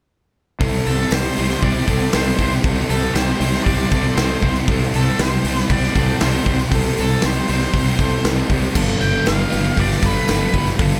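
Blissful and wistful, this short excerpt of shoegaze-tinged dream-pop rock in C major moves at 118 BPM in a straight 4/4. A big, punchy, up-front acoustic drum kit with bright cymbals and a faintly jingly tambourine join layered guitars in the background: dark fuzz riffs with analog chorus, crunchy overdriven riffs with reverse reverb, and lo-fi, slightly broken-up arpeggios through a small old amp with subtle chorus and tape echo. Beneath them sits an overdriven, fingered electric bass. Above them, an octave-fuzz lead guitar carries the melody through tape echo from 0.9 seconds, with the harmony moving from C6 to G7 at 8.8 seconds in a fairly dry mix.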